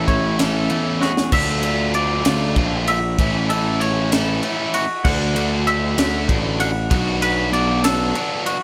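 Intricate and playful, this short math rock and midwest emo cut in a straight 6/8 at 64 BPM opens with a bright twelve-string electric guitar that drops out after a drum fill at 1.0 seconds, leaving a fingered, twangy clean guitar tracing arpeggios over a double-tracked overdriven guitar riff, an up-front growly fuzz bass and a crisp acoustic fusion kit with a high-tuned snare and punchy kick in a small pumping room, all moving through Amaj7, Dmadd9, A6, Dadd9 and Bm7 with little reverb.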